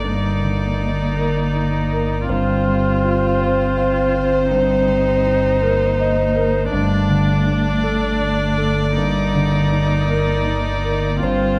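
Moderate concert hall reverb and small room ambience surround this melancholic, fragile neoclassical piece for piano and strings, moving at a rubato 54 BPM in 6/8. A polished, present grand piano carries the accompaniment across the whole passage. An up-front, con sordino violin sings a veiled, vibrato melody, and a muted viola joins at 0.1 seconds with soft-attack bowing. A dark cello with a smooth top traces a second line, and a deep, mellow sine-and-triangle sub bass holds a low G beneath chords that move from Ebmaj7/G through Fsus2/G, Cm7/G and Gsus2 back to Ebmaj7/G.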